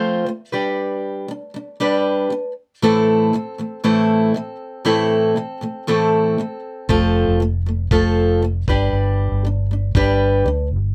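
A fingerpicked acoustic archtop guitar sits up front with a warm, close, detailed sound, carrying this wistful, tender acoustic pop piece on its own at first. At 118 BPM in a straight 4/4, it moves through F, G and A minor, ranging from A2 to C5. At 6.9 seconds a vintage muted fingered electric bass joins, dark and round with a punchy, foam-muted tone, alongside a gritty, thumpy electronic kick drum that is compressed and re-recorded in a small room. The chords return to F and then G as the bass and kick fill out the low end. The dry, intimate recording is cut from a longer piece and stops at 10.9 seconds.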